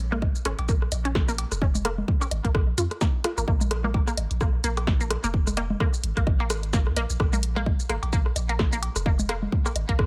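Minimal techno at 129 BPM in 4/4, with a 16th-note swing of 57% and a cool, quirky mood, heard as a 10-second slice from a longer piece built around a Bb chord. An up-front electronic kick, layered and tape-warm with the air of a small room, anchors the groove, while a dry analog drum machine adds hi-hat, shaker and a punchy snare. A deep sine sub bass with a pitch-drop attack sits between F1 and F2 and pumps with sidechain compression. The riff comes from a squelchy, detuned sawtooth blip pluck with ring modulation and a noise layer, run through phaser and delay and pumping as well, while a filter sweep runs across the synth arpeggio sound for the full length. Electronic rim clicks, congas, woodblock and cowbell scatter through dub echo, all set in a digital ambience.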